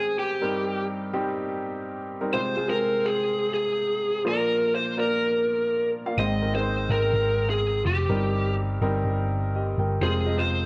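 Driving and dramatic, this pop fragment sets an overdriven, picked lead guitar with a warm lo-fi edge up front, carrying the melody over a clear baby grand piano whose open, long-sustaining chords move through Eb6/G, Fm, Bb and Ab. At 6.2 seconds a dark, round, punchy hollow-body electric bass joins up front as the foundation, giving the passage extra weight. A moderate spring reverb adds a sense of studio space around the parts.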